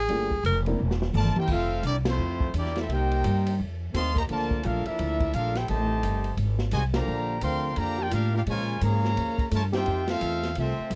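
A bright, tight trumpet section carries the melody from 1.2 seconds in this brassy, joyful big band swing excerpt, with a trombone section in light vibrato playing a second line beneath it and the band hitting accents at 2.0 and 6.9 seconds. It opens with a brief subtone tenor saxophone solo over a short touch of baby grand piano and a drum fill, while a woody, pizzicato upright bass sits up front and a boomy, rolled-off jazz kit with smooth, dark cymbals drives the swing. The sound is dry and close, like a 1970s studio session.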